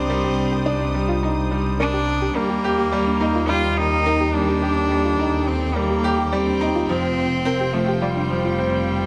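Set in a moderate scoring-stage reverb, this moving, melancholic piano and strings electronica excerpt at 106 BPM in 4/4 features a clear, biting solo cello melody with delay and a bright, woody upright piano riff with delay up front, a dark bowed double bass section underneath, a rich, smooth string section holding sustained chords in the background, and a soft, round pluck playing arpeggios with chorus and delay over chords moving from Cmadd9 to Eb to Fsus2.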